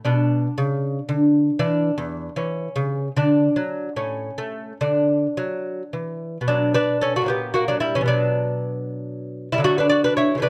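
Serene and flowing, this short classical passage is a baroque-style dance for solo lute, heard from its first moment to its close at 10.5 seconds. The lute sits up front in a close, detailed sound, its gut strings giving a warm, delicate tone touched by light reverb. Fingerpicked across a span from E2 up to D5, the double courses and some octave-doubled strings lend the plucked notes a gentle shimmer. The lilting 6/8 dance moves with an unhurried rubato, breathing freely rather than holding a strict pulse. Around 6.5 seconds the opening phrase returns, its harmony turning toward a more wistful minor colour before settling again, and the music is cut from a longer piece.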